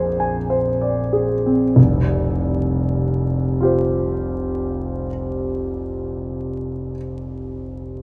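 Hazy and nocturnal, this excerpt from a longer impressionist solo piano piece drifts in a rubato 9/8, slowing through its opening 1.8 seconds over a Bb9 chord before settling onto Fsus2. The concert grand sits up front with an intimate, natural tone, deep bass, long sustain and audible action noise, ranging from F1 to Ab5. A wet concert hall reverb and a dark, warm production, with vinyl crackle, wrap the playing in a dusky glow.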